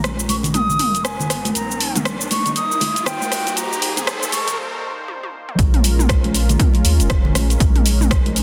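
Earthy and warm, this afro house cut at 119 BPM in Bb dorian, swung on the sixteenths, builds over a Bbm7 to Eb progression as an airy, distant concert flute with dub echo and a detuned sawtooth pad with chorus both move through filter sweeps, alongside a riser, damped high-tuned congas, a round, deep analog bass with tube saturation and sidechain pumping, and an up-front, overdriven deep house kit of hi-hat, rim click, shaker and toms. The flute stops at 4.6 s for a brief break, a drum fill arrives at 5.1 s, and at 5.6 s the drop lands on Bbm7 with a punchy, layered electronic kick. The master is dense and heavily limited with light reverb, and this is cut from a longer piece.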